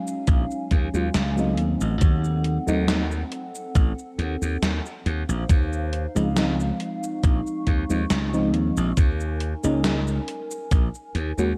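A thumpy, up-front electronic kick anchors this nostalgic, woozy vaporwave excerpt, alongside a bright, growly slap bass with tube saturation and a gated 80s drum machine playing cabasa, hi-hat and snare drenched in gated reverb. Underneath, a soft, round FM electric piano with analog chorus and delay carries the accompaniment, while a warbling, detuned, lo-fi pad with vintage 12-bit grit holds sustained chords. The harmony drifts from Ebm11 through Adim7 and Dbmaj9 to a rootless Gb69, all wrapped in light digital ambience and cassette-tape character.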